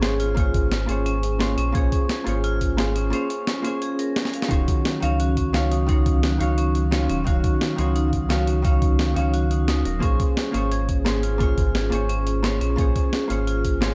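Gritty, compressed breakbeat hi-hat and snare drive this lush, soulful liquid drum and bass excerpt at 174 BPM in Eb dorian, with a thumpy electronic kick entering at 0.4 seconds and a drum fill at 4.2 seconds closing a short break, while a deep, full sub bass sits up front beneath a dark, clean hollow-body jazz guitar and bright, ringing vibraphone arpeggios, both trailed by dub echo, and a very quiet, airy, breathy pad holds sustained chords that move from Bbm7 to Ebm7 and back under light reverb in a dark, warm production.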